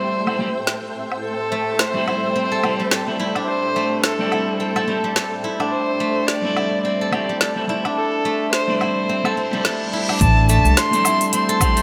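A dark, bowed kamancheh carries an expressive melody with vibrato and portamento over a clean semi-hollow electric guitar roughened by sampler grit and sidechain pumping, a blurred, evolving granular pad in the background, and a woody-snared, crisp-hatted afro-pop kit with cabasa and woodblock in this hypnotic, meditative organic downtempo excerpt at 107 BPM with a 16th-note swing in A minor pentatonic, where a silvery, fingerpicked steel-string zither enters with ringing arpeggios at 1.5 seconds, a reverse cymbal rises from 9.3 seconds, and a growly pizzicato upright bass and deep electronic kick arrive at 10.2 seconds, all within a lush hall reverb and a bright 1980s-style digital sheen.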